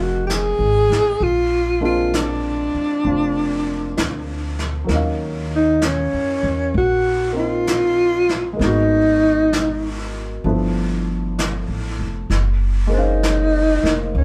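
A breathy, close-miked alto saxophone leads this smoky, melancholic jazz ballad at 65 BPM in a swung 4/4, carrying the melody with a mellow subtone and gentle vibrato up front. Underneath, a warm, present baby grand piano supplies the accompaniment while a woody, thumpy pizzicato upright bass anchors the low end with a dark tone. A vintage kit played with brushes joins at 0.3 seconds, its medium-tuned snare and hi-hat sounding acoustic and mid-forward with a rolled-off top, sitting lowest in the balance. The harmony drifts through rich minor and extended chords, moving from Bbm9 to a G13 before settling on Gbmaj9#11. The band plays live in one room with a moderate studio reverb, giving this short section of a longer piece an intimate, late-night character.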